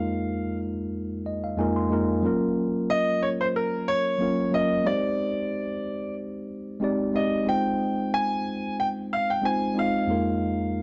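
The recording has a moderate plate reverb with a 2.8-second tail and a dark top end, with nothing above 7.9 kHz. This soul excerpt, cut from a longer piece, moves at 92 BPM in 4/4 with a light 54% swing on the sixteenths, tuned to A4 = 437 Hz. Its mood is bittersweet and cinematic. A tine electric piano carries the accompaniment across the full 10.8 seconds, worn and slightly out of tune yet clean and direct, sitting up front, and it plays a fill from 0.9 to 2.2 seconds. Over it, a clear grand piano plays the melody between Bb4 and Ab5, smooth and vintage in tone with long sustain, also placed up front. The harmony moves from Bb7sus4/F through Gbmaj7, Abmaj7 and Fm7 before returning to Bb7sus4/F at 10.1 seconds.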